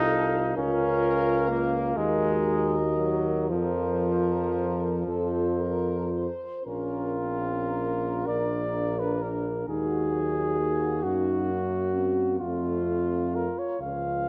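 Classical brass band music in a hymn-like, melancholic and solemn vein, this short excerpt moves slowly in 6/8 at 36-45 BPM counted in dotted quarters, with a rubato feel in Bb minor. A mellow flugelhorn with a smooth top carries the melody up front, while a clear French horn section with light vibrato plays a tight, present second line beneath it. A punchy trombone, also clear and lightly vibrato-tinged, joins a dark euphonium set in the background as accompaniment, and a warm tuba with light vibrato anchors the bass, sounding distant and roomy yet up front. All five parts play throughout, and the harmony passes from F7/C through Ebm and Fsus4 before the second section at 6.7 seconds turns from Bbm to Bb and closes on F. A moderate scoring-stage reverb surrounds the ensemble, and the sound carries the worn, warbling character of old cassette tape, with a warbly pitch drift running through the solemn hymn.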